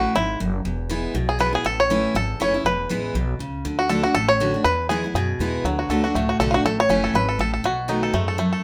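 Swung eighth notes drive this lively, joyful bluegrass passage in four, a short cut from a longer piece. The five-string banjo carries the melody as a solo throughout, its fingerpicked tone twangy and percussive and sitting up front in the mix. A picked steel-string dreadnought guitar accompanies it, also up front, with a bright, full-bodied sound. Underneath, a pizzicato upright bass gives a woody, thumpy foundation through 8.5 seconds. The harmony moves among A, E and D chords and lands on a B7 at the close, all set in a moderate studio reverb.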